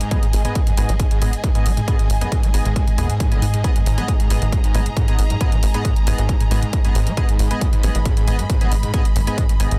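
An up-front, distorted and overdriven electronic kick anchors this hypnotic peak-time techno cut. Around it sit a tight, punchy sawtooth sequencer bass pumping against it, an overdriven drum kit of hi-hat and toms, edgy sync-swept polysynth stabs with chorus and tape echo, and a squelchy, screaming acid line sitting in the background through distortion, cassette tape and echo, all over a very quiet, moody, warbling pad drone and a lush bowed string section with vibrato, in a dense, heavily limited, dry mix.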